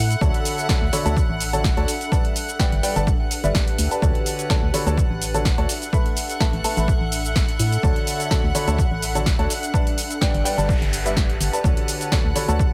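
Piano house at 126 BPM in D major, this joyful, euphoric cut from a longer piece rides a lightly swung 4/4 groove. A punchy, tape-warm electronic kick sits up front, joined by an analog drum machine's hi-hat, shaker and punchy snare, both re-recorded in a small room for a slightly roomy edge. A worn, woody upright piano that is a touch detuned carries the riff with short sustain, delay and sidechain pumping, moving through Dmaj7, G and Asus2 changes. Underneath, a hollow, organ-like FM bass with a fast, decaying attack pulses darkly, while a bowed string section holds pure, floating chords high above. A blurred granular cloud pad with built-in reverb drifts through the mix alongside the pumping strings and bass, and a faint electronic noise sweep passes in the background between 10.1 and 11.6 seconds, all set in a digital ambience.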